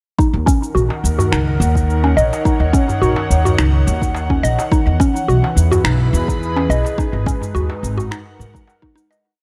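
Over a straight 4/4 groove at 106 BPM, this short, mystical and hypnotic organic downtempo piece pairs an up-front, overdriven deep electronic kick with a layered electronic shaker and finger snaps and a crisp darbuka struck with hard hands in the background, while a woody, thumpy pizzicato upright bass plays a syncopated riff, a round, mellow mallet-like synth pluck runs a repeating 16-step arpeggio through chorus, phaser, tape echo and a filter sweep, and an airy, breathy, warbling vintage pad holds slowly shifting chords from Ebm7 through E to Abm7 under light reverb before a fade-out from 6.2 seconds.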